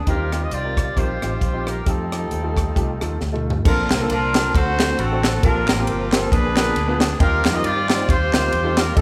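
A tight funk drum kit sits up front, its dry, high-tuned snare, snug kick and bright cymbals driving this uplifting, hopeful uptempo gospel cut at 135 BPM in 4/4 with a swung eighth-note feel. A horn section carries the melody from the start, up front yet distant and roomy, with light vibrato and a pop-style ensemble blend. Beneath it, a fingered electric bass lends a dark, round, punchy amped tone, while a grand piano accompanies softly in the background and a very quiet tonewheel organ holds clean sustained chords through a slow rotary speaker with chorus vibrato. A drum fill at 3.2 seconds leads into a new section at 3.7 seconds, where crisp, close handclaps join very quietly at 3.9 seconds. The harmony moves through rich extended chords such as Eb69, F9, Bbmaj9 and Gm11 before returning to Eb69, all captured as a band playing live in one large studio with moderate reverb, in a brief cut from a longer piece.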